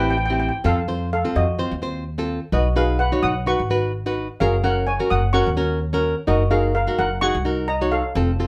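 A steel pan, nylon-string guitar and upright bass start together in this driving, intense calypso cut from a longer piece, carried by a lightly swung sixteenth-note feel. The lead pan, struck with medium rubber sticks, sings the melody with a dark, shimmering metallic tone, while the classical guitar fingerpicks the accompaniment with audible finger squeak and the pizzicato bass adds a woody, warm low end. All three sit up front in a moderate studio reverb, captured as a band playing live in one room.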